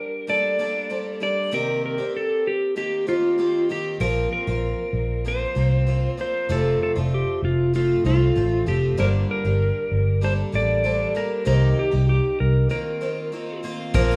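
A clean lap steel guitar carries the melody up front, its slide lines and volume swells giving this sunny, heartfelt acoustic pop fragment its tender voice. Beneath it, a shimmering, octave-doubled twelve-string acoustic guitar picks out the accompaniment while a very quiet, full-bodied nylon-string guitar adds dark, thumb-plucked arpeggios, and a round, foam-muted vintage electric bass joins at 4.0 seconds. After a short break, an unplugged drum kit with a punchy kick, dark cymbals and a shaker arrives at 13.9 seconds in the background of this rough home-demo mix.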